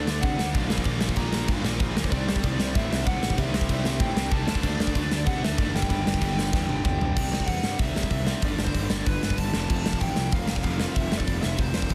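This dry, dense recording has a heavily limited modern master, and it is cut from a longer punk rock piece that charges along at 190 BPM in a straight 4/4 with an upbeat, rebellious mood. A big acoustic drum kit sits up front in a stone room, with a punchy kick, medium-tuned snare, hi-hat, crash and toms, and it drives through a fill from 6.5 to 7.2 seconds. Meanwhile the chords move through D, Bb and C, then power chords on D and G, back to C, and on to power chords on G and F. Underneath, a picked electric bass growls with fuzz and overdrive. A wall of overdriven riffing guitars fills the middle: a bright cranked stack in the background, a very quiet warm hollow-body semi-hollow, and a double-tracked overdriven electric that drops out at 7.0 seconds. Over them, a bluesy lead guitar carries the melody in a dark, distorted tone, high in its register and trailed by tape echo.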